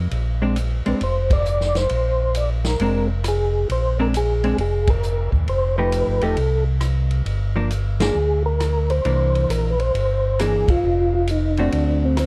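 A swung 4/4 groove at 134 BPM drives this greasy, soulful soul jazz organ trio, cut from a longer piece and moving through Bb9, F9, Gm7, C9, F and D7. A mellow tonewheel organ carries the bass line from the first moment, its round, dark tone shaped by chorus vibrato and a slow rotary speaker and sitting up front in the mix. The vintage drum kit enters at 0.1 seconds with hi-hat, kick, ride, rim clicks and a medium-tuned snare, sounding natural and acoustic in a studio room with a rolled-off top and a tight kick. A hollow-body jazz guitar comps underneath, picked, compressed and clean with a dusky electric tone, while a second tonewheel organ takes the melody from 0.9 seconds with a soft, flute-like voice, second-harmonic percussion, chorus vibrato, slow rotary and plate reverb. The band hits accents together at 1.2, 4.8, 7.9 and 10.6 seconds, and the overall production is dark and dry.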